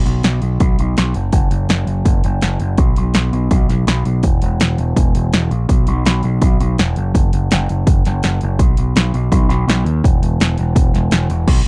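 Driving straight 4/4 at 165 BPM, this upbeat, jangly indie rock excerpt pairs a growling picked electric bass, bright and overdriven, ranging from E1 to D#2, with an up-front, tape-warm techno drum kit of heavy kick, punchy snare, warm hats, hi-hat and crash cymbal, all in a dry, close 1970s-style studio sound.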